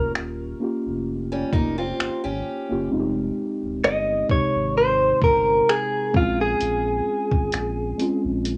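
A slow, lightly swung sixteenth-note groove in 4/4 sets a moody, late-night contemporary R&B feel, with a gritty, compressed sampler-style kit of finger snaps, hi-hat and a thumpy kick arriving at 0.2 s and the kick dropping out between 2.9 and 3.8 s. Underneath, a deep sub bass with an octave layer sits low and sustained, while muted, dark felt-like synth keys carry the harmony through Eb9, Fm9 and Bbm9 with chorus, a filter sweep and a soft decaying touch. Up front, a clean, warm electric guitar recorded direct plays the picked, compressed melody in a fairly high register. For a brief stretch early on, a boxy old ladder-braced acoustic guitar adds picked arpeggios treated with tape echo and plate reverb. Cassette tape colour and light reverb give this short cut from a longer piece an intimate, home-recorded character.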